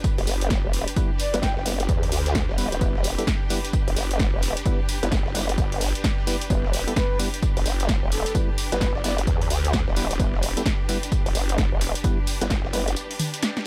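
Swaggering and aggressive, this short bass house cut in E minor struts at 130 BPM with a swung 16th feel, driven by a punchy, up-front electronic kick and a layered house kit with toms, a faint gritty sampler-style kit with tambourine, and a distant, grainy shekere, while a nasal, saturated vowel-sweep wobble bass pumps beneath biting symphonic strings and hollow, wave-folded organ stabs with dub echo, a breathy flute-like lead surfaces in the background briefly at 1.2 seconds and again from 7.0 to 9.1 seconds, and the kick drops out at 13.0 seconds for a closing drum fill.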